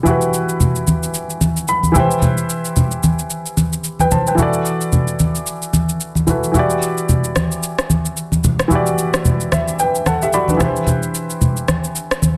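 Set in light digital ambience with a dense, heavily limited modern master, this short amapiano cut from a longer piece feels soulful and hypnotic, with a swung sixteenth-note feel. A dark, mellow baby grand sits up front, intimate and natural with audible action noise and short sustain, comping through Em7, rootless Am9/E and Bm7/E chords and breaking into fills at 1.4 and 9.3 seconds. Low-tuned congas with a thick-skinned, live-room tone and soft hands share the foreground, while a layered, produced electronic shaker and rim click keep time beneath.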